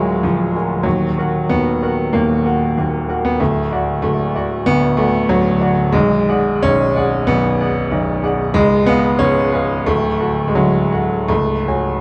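A clear, intimate baby grand piano sits up front, its long sustain and audible action noise giving this stormy, brooding romantic character piece a natural closeness as it ranges from B0 up to G#5. Played with rubato in 4/4 at roughly 78-99 BPM and tuned to A4 = 435 Hz, the 12-second fragment moves through shadowed harmonies such as D#m, G#m7b5/B and C#7 before reaching C#sus4 at 11.3 seconds. Light reverb and a dark production wrap the solo instrument in a somber glow.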